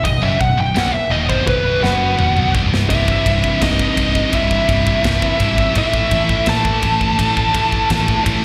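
A straight 4/4 heavy metal pulse drives this epic, relentless fragment of a live gig heard through the venue's PA, where a dark, up-front high-gain lead guitar with slapback echo and delay solos through the opening 2.9 seconds as a drum fill rolls in; a quieter second lead guitar joins in the background at 1.8 seconds, a bright, scooped, double-tracked rhythm guitar churns out a low riff, a growly picked bass sits beneath, and a tight, polished, airy drum kit with bright cymbals and toms pushes the music through B, C and A5.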